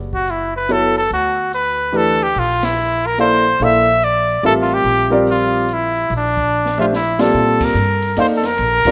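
A woody, plucked upright bass opens this short cut from a longer modal jazz piece. A clear, forceful trumpet and a dark, smooth jazz drum kit join almost at once, and a warm concert grand piano enters at 0.7 seconds. The swing runs at 144 BPM in 3/4, and the mood feels open and searching as the harmony moves from Dadd9 to Bbmaj9. Up front, the trumpet plays a jazz-style solo with light vibrato and scooped notes, while the drums sit in the background with dark cymbals, a medium-tuned snare and a punchy kick. The piano has an intimate, natural tone with deep bass and audible action noise, and band accents plus a drum fill from 6.5 to 7.3 seconds carry the music into a new section. A lush hall reverb surrounds the rough, home-demo mix.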